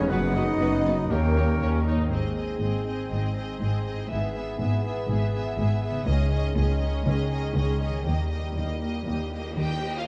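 A heroic, soaring cinematic adventure cue at 120 BPM opens with a brief burst of airy silver flute, clear clarinet, oboe, mellow French horns and trumpet stabs over trombones, strings and harp, before the woodwinds, horns and trumpet drop away by 1.9 s. Throughout, a lush studio violin section carries the melody with vibrato and portamento, supported by a second symphonic violin line, focused violas, rich double basses and cellos, sustained trombone chords in the background and very quiet ringing harp arpeggios. The dark, warm production sits in a moderate scoring-stage reverb, and the passage is cut from a longer piece.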